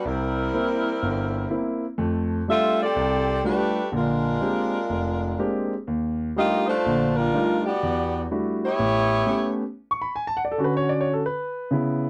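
A saxophone section with light vibrato and a soft attack carries the melody up front in this brassy, energetic swing jazz passage at 123 BPM, backed by a warm concert grand piano with deep bass whose chords run from C7 to Dmaj7 before the saxophones stop at 9.6 seconds and the piano plays alone from 9.8 to 12.1 seconds, all captured in a dry, close 1970s-style studio sound with light reverb and cut from a longer piece.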